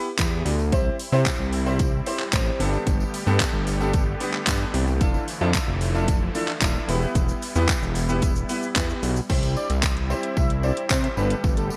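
A bright, 1980s-style digital production with light reverb frames this driving, bittersweet dance-pop excerpt at 112 BPM in a straight 4/4, cut from a longer piece. A brilliant, vintage-toned concert grand piano opens at 0.0 seconds with a lush chorus and sidechain pumping, joined almost at once by a fat, detuned sawtooth analog bass sitting up front with a filter sweep, and a punchy, layered pop drum kit of kick, metallic hi-hats, handclaps, shaker and crash cymbal wrapped in gated reverb. A jingly acoustic tambourine ticks along in the background, while from 0.7 seconds a filtered supersaw swell adds soft-attack, evolving sustained chords, also chorused and pumping beneath the mix. The harmony moves through Em, C, Gadd9 and Dmadd9/F before circling back. At 9.6 seconds a thick, bold yet mellow unison lead enters with vibrato, delay and a moving notch, carrying the melody to the close.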